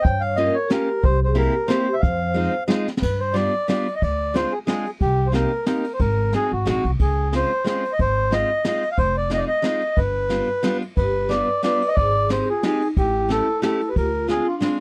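A bittersweet, whirling musette waltz in F minor opens with a reedy, round accordion carrying the melody up front, joined at once by a woody, thumpy pizzicato upright bass, a brushed jazz kit with dark cymbals, a high-tuned snare and a boomy kick, and a soft-mallet vibraphone whose ringing, metallic tone shimmers with fast motor vibrato. The picked steel-string acoustic guitar comes in almost immediately as accompaniment, close and present, with audible finger squeak. The vibraphone drops out at 2.6 seconds, and a drum fill at 2.9 seconds ushers in the longer second section, where the harmony drifts through minor-seventh, half-diminished and dominant chords before settling briefly on Dbmaj7 and Abmaj7. The vibraphone's dark, smooth second line returns at 11.0 seconds for the closing stretch. At a lively 181 BPM in 3/4 with a light swing, the dry, intimate 1970s-style studio sound with a touch of reverb keeps the small ensemble tight and personal in this excerpt cut from a longer piece.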